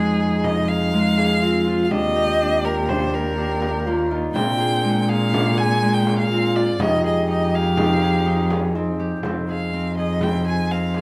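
A wet studio reverb surrounds this hypnotic, pensive chamber piece, a passage cut from a longer work in F dorian at 123 BPM, moving in a straight 5/4. Up front, a rich bowed violin carries the melody between Ab4 and Ab5 with expressive vibrato, soft attacks and portamento. A warm solo French horn adds a second line in classical style, with vibrato and soft attacks. Beneath them, a fingerpicked Celtic harp rings out arpeggios, while a single cello holds the bass close and intimate, played sul tasto with an airy bow and light vibrato. From 0.4 seconds a small, bright frame drum sounds distant in the background, as if heard across a large room. The harmony moves from Fm7 through Ebmaj7, Bb9 and Fm9, and a new section at 9.2 seconds returns to Fm7.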